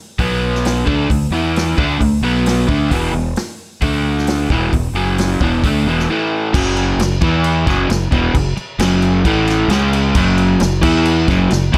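A crunchy, double-tracked overdriven guitar sits up front, picking a menacing power-chord riff over a growling, tube-saturated fingered bass and a vintage drum kit with a punchy kick and dark cymbals, giving this gritty garage rock excerpt a small-room ambience as it shifts into a new section at 6.5 seconds.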